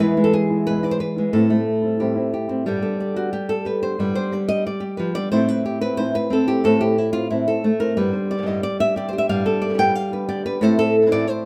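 Two acoustic flamenco guitars open together at 0.0 seconds in this dramatic, passionate excerpt from a longer piece. It moves at a brisk 181 BPM in a straight 4/4 in A minor. The lead guitar sits up front with a warm, fingerpicked tone and carries the melody across a broad range. The second guitar, dark and thumb-plucked, plays lower stabs beneath it at a softer level. The harmony moves from E to Am7, then alternates between Gadd9 and Am. At 2.7 seconds the nylon-string guitar takes a solo that runs until 11.5 seconds. A moderate stone-room reverb gives the pair a resonant, enclosed sense of space.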